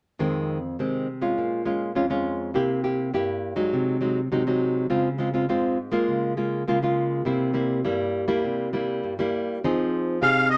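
A reedy, shimmering musette accordion slips in up front at 10.2 seconds over a fingerpicked classical nylon-string guitar that carries this nostalgic, yearning samba fragment through the preceding minor-key chords, with a moderate studio reverb.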